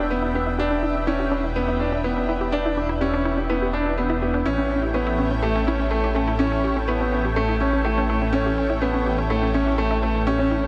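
Melancholic and hypnotic, this short piano and strings electronica passage at 124 BPM in 4/4 moves from Em7 to A7 at 4.5 seconds, with a brilliant grand piano riff up front carrying analog delay, a deep, rumbling detuned saw bass, a thick unison pad holding sustained chords through chorus and phaser, and a punchy filtered pluck tracing arpeggios with analog delay in the background, all set in a dreamy mix soaked in a huge ambient reverb with a 7.6-second tail.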